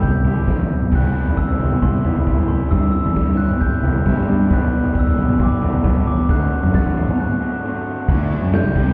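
A punchy, gritty garage drum kit sits up front in this wistful, jangly indie rock fragment, joined by a growling overdriven fingered bass, a bright, picked garage guitar riff, a lo-fi, slightly broken-up guitar through a small old amp with subtle chorus in the background, and a ringing, bell-like glockenspiel melody played with soft plastic mallets through digital delay, the mix sounding muffled as if heard through a wall in a stone room while the chords move from C through Gmaj7/B and D7 into a break at 7.2 seconds.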